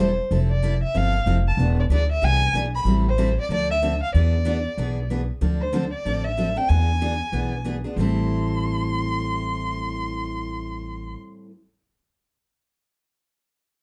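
A dark, lightly reverberant production sets a bittersweet, swinging mood in this brief cut of acoustic jazz manouche, moving at 188 BPM in A minor with swung eighth notes. Up front, a woody pizzicato upright bass and a bright, freshly strung picked steel-string guitar carry the accompaniment over harmony that runs through Fmaj7, E7, Am7 and Dm9 across three short sections. From 0.5 seconds a single bowed violin sings the expressive melody with vibrato and portamento and a smooth top end, and the guitar rings on alone until 11.5 seconds.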